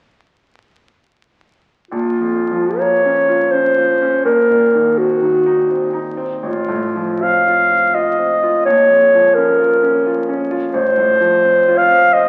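Through the crackle of a very old 78 rpm record and a reverberant recital hall, this solemn, melancholic romantic classical excerpt in 3/4 and Bb minor moves with rubato at 65-89 BPM, as a dark, soft-edged clarinet carries the melody up front while a bright, brilliant baby grand piano supplies open accompaniment from 1.9 to 12.3 seconds, passing from Bbm through Cm7b5/Bb and F/A, returning to Bbm and then moving back to F/A.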